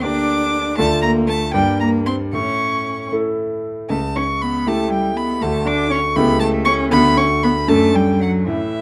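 A dark production with light reverb frames this stormy, urgent excerpt from a quick classical-period movement for piano trio, played in 6/8 at 78 BPM in dotted quarters with a rubato feel. A close, clear violin carries the melody up front with smooth vibrato, a rich bowed cello sings a second line beneath it, and a vintage-toned concert grand with deep bass supplies the accompaniment. The harmony moves through Gm/D, Dm and Gm to A before settling into D major from 3.9 s, alternating A7/C# and D before closing on D/F#.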